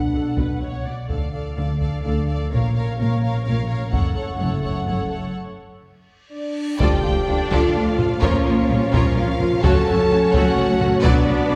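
Epic orchestral film score in a dark 3/4, heard as a passage cut from a longer piece, with lush bowed violin sections carrying the melody and a second line over rich violas, expressive cellos, woody double basses and mellow, distant French horns holding sustained chords, all set back in a roomy scoring-stage reverb. Close, hard-stick taiko drums drive the music, breaking off at 5.4 seconds before a drum fill and a huge, bright reverse cymbal rise into an impact at 6.8 seconds. From there a focused background string section and soft-edged trombones join with sustained chords as the progression cycles through minor harmonies.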